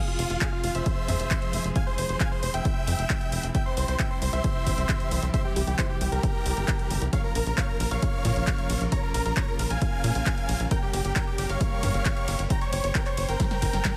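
Set in a digital ambience, this excerpt of uplifting trance feels driving and soaring, with most parts breathing to a sidechain pump. A huge, euphoric supersaw lead carries the melody, its detuned sawtooth unison bright and compressed, trailed by tape echo. Beneath it, a lush unison pluck adds a second line in the background, while a rich, earthy chamber string section holds distant bowed chords with light vibrato over a progression of Fm, C, Bbm and Gdim. Up front, a tight sequencer bass enters at 0.2 seconds with a filter-plucked sawtooth and square-wave tone, fattened by tube saturation, joined at 0.4 seconds by a tape-warm electronic kick. A dry, overdriven analog drum machine supplies handclaps, hi-hat, ride cymbal and a punchy snare, closing with a drum fill from 13.4 seconds.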